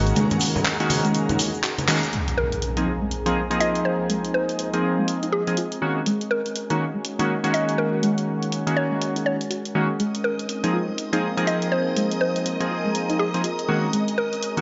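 This deep house excerpt opens on analog keys stabbing out Ab9sus4 chords over an ethereal, airy pad, with a house drum kit of handclaps and hi-hat entering at 0.1 s alongside a grainy tube shaker, joined at 0.2 s by ringing congas struck with hard hands and a soft, round pluck spinning arpeggios in the background. The mood is hypnotic and warm at 122 BPM in Bb minor, with a 60% swing on the sixteenths and a vintage string machine of violins shimmering high above. The congas fall away at 1.9 s with a drum fill and band accent, and the shaker and strings drop out at 2.1 s. An electronic impact lands as the harmony shifts to Bb9sus4 and a filter sweep begins on the arpeggio pluck, and from 2.4 s a woody, FM mallet-like pluck carries the melody with 12-bit sampler grit and dub echo. From 3.1 s a warbly, nostalgic tape-like pad holds dark sustained chords in the background, and the violins return at 10.0 s as the chords keep alternating between Ab9sus4 and Bb9sus4. 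The drums carry a tape-warm, layered character re-recorded in a large room, and the whole mix sits in a moderate, lush hall reverb with a softened, dusky top end.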